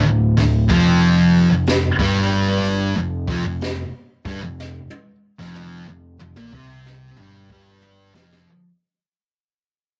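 Sludgy and ominous, this short stoner and doom metal excerpt crawls at 62 BPM with a swung 4/4 feel, as two thick fuzz guitars (one up front) grind out a riff over a growly, punchy overdriven picked bass, while a distant, roomy jazz brush kit with a boomy kick and high-tuned snare enters at 0.4 seconds and plays a fill from 4.6 seconds, all captured in a rough rehearsal-room sound with light reverb and a fade-out throughout.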